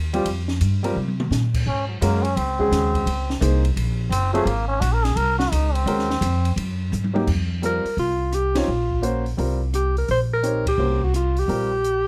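Spiritual and cool, this brief modal jazz excerpt swings briskly over suspended harmonies, with a woody, thumpy pizzicato upright bass and an intimate grand piano, its action noise audible, driving alongside an open drum kit of dark cymbals, a high-tuned snare and a boomy kick, which plays fills around 1.0 and 6.9 seconds. A nasal, growling trombone in straight mute carries a raspy, breathy solo with scooped notes from 1.7 seconds, then a mellow alto saxophone with vibrato takes the melody at 7.7 seconds, and the band hits accents together at 8.5 and 10.6 seconds. Light reverb gives the close, up-front sound a touch of room.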